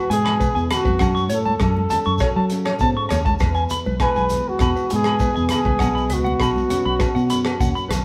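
A straight 4/4 groove from a tight-kicked soul drum kit with hi-hat and rim click, a round, foam-muted fingered electric bass, grainy shekere in the background, ringing agogo bells from 0.3 s and soft-handed, high-tuned congas from 0.7 s drives this sunny, joyful highlife excerpt, where a breathy, whispered trumpet carries an intimate, scooped, vibrato-tinged melody up front over full-bodied fingerpicked nylon-string guitar and twangy clean electric guitar arpeggios with harmonic tremolo, the band playing live together in a moderate stone-room reverb.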